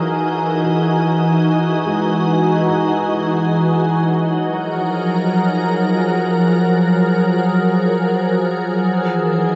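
A huge, wet ambient reverb with a nine-second tail wraps this dark, warm production, a short serene passage cut from a longer piece in F# major at 73 BPM in a straight 3/4. Up front, a soft organ-like pad built from detuned sine and triangle tones holds sustained chords, its slow attack and long release given shimmer by ensemble chorus, ring modulation and its own reverb, sounding bright and pure. Beneath it, a felt-muted upright piano plays very quiet, mellow arpeggios with an intimate, thick-felt softness, stopping at 5.5 seconds. In the background, a glass harmonica adds an ethereal, beating texture, fading out across the passage. The harmony drifts from Emaj9 to F#maj9 at 3.9 seconds and back to Emaj9 at 8.9 seconds, leaving a calm, peaceful stillness.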